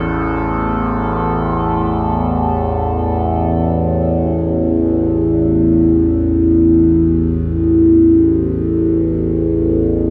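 Desolate and cavernous, this dark ambient drone excerpt sets an up-front, ring-modulated sawtooth-and-sine drone with moving overtones and chorus, sounding from 0.0 to 10.1 s, beneath a nasal, reedy gut-string chamber cello section that holds smooth bowed chords in period style until 4.2 s, the whole dreamy mix soaked in cathedral reverb.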